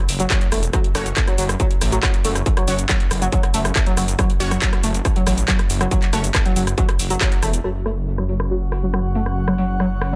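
A distorted, layered electronic kick drum sits up front from 0.3 seconds and drives this dark, intense peak-time techno cut at 139 BPM in F# minor, dropping out at 7.3 seconds. Beneath it, a thick, menacing detuned saw bass throbs with sidechain pumping, while a tape-toned analog drum machine fills in crash cymbal, handclaps, hi-hat, rim click and shaker through low-pass filtering. A gritty, screaming overdriven synth lead carries the riff, its guitar-like tone thickened by tube saturation, chorus and digital delay. An aggressive rave stab punches in the background with phaser and dub echo until 6.2 seconds. As the piece moves into its second section at 7.6 seconds, filter sweeps move across the drums and lead, an airy, breathy pad drifts in, and a deep, moody ambient pad hums very quietly underneath, all within a dense, heavily limited mix with little reverb.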